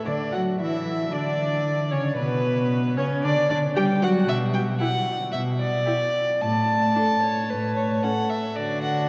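This quick classical-period movement for string quartet, cut from a longer piece, has a restless, stormy mood in a straight four-beat pulse. All four players bow gut strings in period style with a reedy edge: the second violin carries a light vibrato and sits higher, while the melody violin plays up front. The viola plays a close, nasal accompaniment with an airy bow, and the dark cello anchors the bass up front with its own light vibrato and a smooth top. The harmony moves from D through G and an E chord over B, then drops out briefly at 6.4 seconds before A leads back to D at 8.6 seconds. A wet cathedral reverb bathes the quartet, and the sound is worn and warbling, like old cassette tape with drifting pitch.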